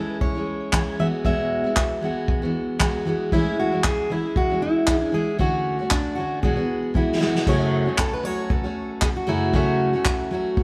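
Opening on a fingerpicked jumbo steel-string guitar carrying the melody through a delay over a full-bodied picked acoustic guitar up front, this sunny, easy-going acoustic pop excerpt at 116 BPM with a gentle sixteenth-note swing brings in a punchy, dark-cymballed drum kit played with bundle sticks and handclaps, which rolls through a fill at 6.9 seconds before a clear, intimate grand piano with audible action noise slips in quietly in the background at 7.4 seconds as the chords shift to F#m, all captured as a band playing live in a moderate stone room.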